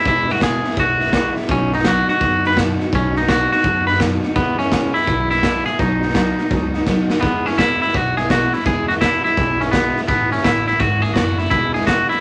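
Rowdy and retro, this rockabilly excerpt swings at 168 BPM in E major, with a twangy, clean, compressed electric guitar carrying the melody up front over a bright, full-bodied picked steel-string acoustic whose finger squeak comes through. A raw garage drum kit sits up front too, saturated and gritty with a punchy kick, medium-tuned snare and hi-hat in a pumping stone room, while a woody, thumpy pizzicato upright bass on gut strings stays in the background. The chords move between E and B before a drum fill at 6.9 seconds leads into a repeat of the section that touches A, all in a moderate studio ambience.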